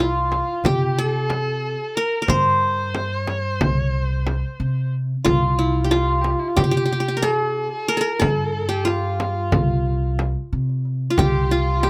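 A stately Turkish makam ensemble piece in 9/8, cut from a longer work, opens with the qanun carrying the melody up front, its plucked triple strings sounding bright-edged. Alongside it, a distant, smooth kamancheh bows a second line with vibrato and portamento, while an upright bass adds a woody, thumpy pizzicato foundation up front in the mix. At 0.3 s the percussion enters: a very quiet, crisp metal-shell darbuka struck with hard hands, and a close, dry frame drum that lends the rhythm a warm tone. Just before the close, at 11.2 s, a studio violin section slips in, close yet in the background, expressive and gently warm. Light reverb gives the ensemble a sense of space.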